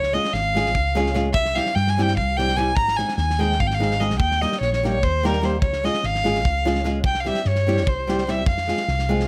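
Balkan folk in the manner of a wedding band, this restless, virtuosic passage, cut from a longer piece, moves at 295 BPM counted in eighths through a straight 7/8. A single bowed violin carries the melody up front from the start, its vibrato tone even and smooth all the way to the top, ranging from Bb4 to Bb5. Beneath it, a round, dark hollow-body short-scale electric bass, fingered and amped, anchors the low end, while a fingerpicked acoustic flamenco guitar adds warm accompaniment from 0.1 seconds. A loose indie drum kit of kick and snare sits further back, pairing a fat snare with a tight kick in a small-room sound whose top is rolled off. The harmony moves through Db, C, Ab and Eb, returns to Db and C, then closes on Fm, and close, detailed microphones with light reverb keep the whole ensemble intimate and clear.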